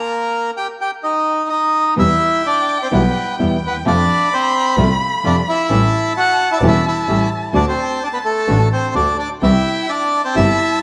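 A reedy, up-front bandoneon melody with tape echo opens this passionate, melancholic rubato tango at 128 BPM in 4/4, paired from the start with a distant bowed violin line full of vibrato and portamento, then a stop falls from 0.1 to 2.0 s before a woody, thumb-plucked nylon-string guitar, an earthy bowed double bass and very quiet, boxy bandoneon stabs enter at 2.0 s, all set in a moderate echo-chamber reverb.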